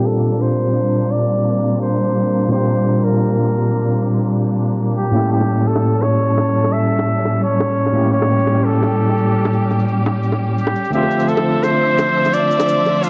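A straight 4/4 pulse at 171 BPM drives this lush, dreamy liquid drum and bass excerpt, with a compressed, gritty shaker sitting in the background under a filter sweep and tight, high-tuned bongos joining close and dry at 5.4 seconds. Up front, a barky, overdriven tine electric piano with medium tremolo through a combo amp carries the accompaniment, while a clear, soft-attack flugelhorn with tape echo sings a vintage, classical-style solo melody. A rich, bowed symphonic string section holds sustained chords with vibrato over a Bb69, A7b9 and Dm9 progression, all in a dark production with light studio reverb.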